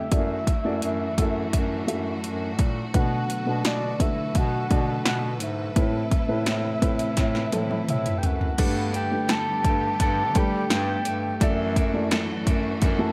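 An up-front, overdriven deep house drum kit leads this anthemic, piano-driven pop excerpt, its deep kick, punchy snare, metallic hats, crash and toms carrying the weight of the mix, with a drum fill arriving at 7.2 seconds. A dark, woody upright piano with short sustain supplies the accompaniment, while a distant, roomy bass clarinet in a classical style holds the low end. A soft octave-layered synth lead, round and full with a sub octave, vibrato and chorus, sings the melody until 12.1 seconds. Beneath it, a studio string section bows smooth, focused sustained chords. At 8.6 seconds a fingerpicked steel-string acoustic guitar enters with a riff over chords moving from Gadd9 back to Dadd9/F#. The excerpt sits in bright 1980s-style digital production with moderate plate reverb and small room ambience, giving it a warm, anthemic glow.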